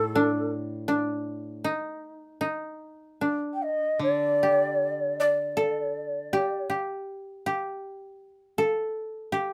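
Close, detailed microphones and light reverb frame this austere, calm passage of Japanese chamber music, cut from a longer piece and moving in a rubato 4/4 at about 73-83 BPM, where an airy, hollow bamboo shakuhachi with vibrato and a crisp, chiffy attack carries the melody up front until 6.7 s, a woody, dry koto played with fingerpicks adds a second line that continues alone to 9.5 s, and a quieter, lower koto gives accompaniment until 6.3 s.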